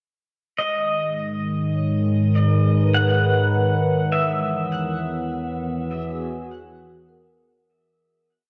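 Opening on a clean, twangy pedal steel melody at 0.6 seconds, this serene, reflective ambient piece in G# minor drifts at 51 BPM in 3/4 over G#m7 and Emaj7, as a warbling, nostalgic tape-like pad holds slowly shifting chords up front, a deep, ominous drone rumbles beneath, and mellow soft-mallet vibraphone notes fade in from the background under tape echo, all soaked in a lush hall reverb before the fade-out that begins at 4.1 seconds.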